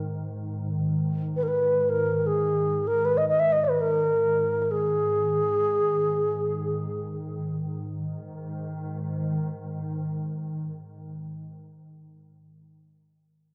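Unmeasured and in free time, this fragment of world meditative music drifts in G# hirajoshi with a spacious, haunting mood. A glassy FM pad opens the piece as a low drone, its slow attack and long release thickened by ensemble chorus and its own built-in reverb, and it sustains until 11.5 s. At 1.4 s a mellow, wooden-headed alto flute enters up front with an airy melody, its crisp attack, vibrato, rolled-off highs and slightly unsteady tone trailed by an analog delay, before it falls silent at 7.2 s. The drone then rings on alone through the second section. A wet spring reverb surrounds the sound, and the worn cassette tape lends a warbly pitch drift that deepens the ethereal atmosphere.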